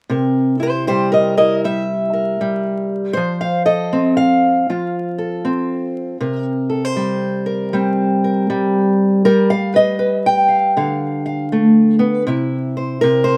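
A fingerpicked old ladder-braced acoustic guitar plays alone and up front, its boxy tone carrying audible finger squeak, in this swaggering, laid-back acoustic country blues cut from a longer piece. It moves at 79 BPM in 4/4 with a swung eighth-note feel in C mixolydian, working through C7, F, C5 and G7 before a new section begins at 12.3 seconds. The sound is dry and outdoor, with little reverb and a layer of vinyl crackle.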